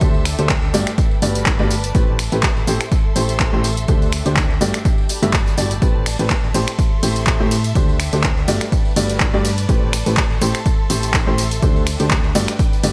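Energetic and soulful, this piano house excerpt moves at 124 BPM in A dorian with a light 16th-note swing, as a clear, woody upright piano riff with digital delay and sidechain pumping rides over a round, punchy FM bass, an up-front dry electronic kick, a tape-flavored analog drum machine supplying finger snaps, handclaps, hi-hat, ride and tambourine through gated reverb, a very quiet, distant tambourine, and a lush bowed string section adding vibrato-rich texture, all cycling through D7sus4, Gmaj9 and Am9 in a bright 1980s-style digital mix with small room ambience.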